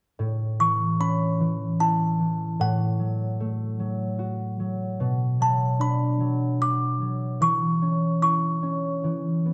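A moderate concert hall reverb gives this tender, innocent lullaby excerpt a soft halo, with both instruments sitting up front at an unhurried 75 BPM in a straight 3/4 lilt in A major. A mellow, thumb-plucked concert harp enters at 0.2 seconds with ringing low and middle accompaniment through A, F#m/A, Bm and C#m/E. A delicate, tinkling music box with a vintage, band-limited, large-box character joins at 0.6 seconds to carry the high melody.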